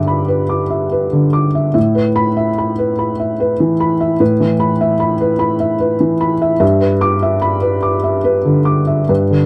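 A felt-muted upright piano carries this brief, melancholic fragment of neoclassical minimalism on its own, sounding soft, mellow and boxy, with the clatter of its action audible. Set up front in a dry, close studio sound with a 1970s character and only a touch of reverb, it feels intimate, as though the listener sits beside the instrument. The playing moves in a gentle triple metre with a free, rubato feel, spanning from G2 up to D6. The harmony rests on Em7/G, shifts to Asus2 at 1.8 seconds, and returns to Em7/G at 6.6 seconds. Cut from a longer piece, the passage lasts 9.5 seconds and leaves a quiet, reflective impression.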